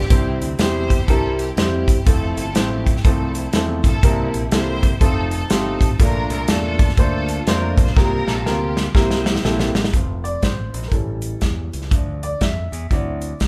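A swung 4/4 groove at 122 BPM drives this uptempo gospel excerpt in F major, its eighth notes rolling with a soulful, uplifting lift. An airy, polished country drum kit sits up front with a punchy kick, a medium-tuned snare and hi-hat, and it plays a fill from 8.0 to 9.9 seconds. A bright, direct fingered electric bass holds down the low end, while a woody upright piano with long sustain, also up front, carries the accompaniment through changes such as Fmaj7, C7, Bbmaj7 and C7sus4. A lush, distant symphonic string section carries the bowed melody with vibrato until 9.9 seconds, when the strings drop out and the piano takes a featured solo over F, A7, Dm and D7 to close the clip. The band sounds like it is playing live together in one large studio, bathed in moderate reverb.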